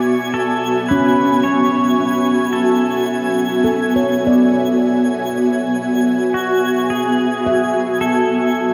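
In a straight, unhurried 4/4 at 55 BPM, this luminous, weightless ambient passage rests on a single Dmaj9#11 chord: an ethereal, detuned pad with ensemble chorus and tremolo sits up front, a twangy pedal steel guitar played with fingerpicks and slide drifts its melody through diffuse delay, a handpan of ringing nitrided steel joins at 0.9 s with dark arpeggios in the same delay, and a faint, sparkling granular shimmer hovers high above, all set in a vast, echoing space with a 7.3-second reverb decay.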